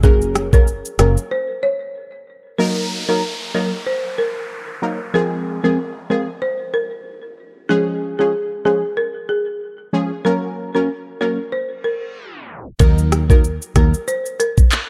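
Dancehall at 94 BPM with a tough, hypnotic feel, this excerpt opens on knocking electronic drums with handclaps, rim clicks, smooth hats and shaker, a round, foam-muted fingered bass, punchy detuned sawtooth brass stabs treated with chorus, phaser and sidechain pumping, and a woody, rustic folk marimba carrying the melody through tape echo. The bass drops out at 1.2 s and the drums at 1.3 s, leaving marimba and brass over chords moving from Gb through Ebm, Fm and Db while a downlifter and reverse cymbal drift beneath, before a tape stop at 12.2 s. At 12.8 s the bass and drums return on Ebm in a dark production with light reverb.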